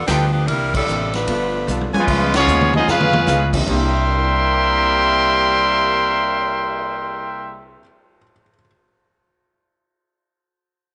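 Swung eighth notes drive this brassy, energetic big band swing excerpt, cut from a longer piece, as a woody, thumpy pizzicato upright bass and a swinging drum kit with a punchy kick, ride, hi-hat, snare, toms, crash and cymbal swells carry the pulse. An edgy, tightly played saxophone section sits up front with the opening melody for its first 1.9 seconds, while a clear trumpet section with a soft attack adds stabs, and a clear trombone section enters at 1.1 seconds to carry a second line. At 2.0 seconds a bright, present trumpet section takes over the melody with light vibrato, and it is the loudest voice in the band. A grand piano with short sustain and audible action noise comps in the background, and a dark, clean hollow-body archtop guitar picks very quietly underneath. Band accents and drum fills punctuate the shifting chords, which move from C9 and G9 to Db7 and back to C9. The sound is natural, with light reverb and a small room ambience.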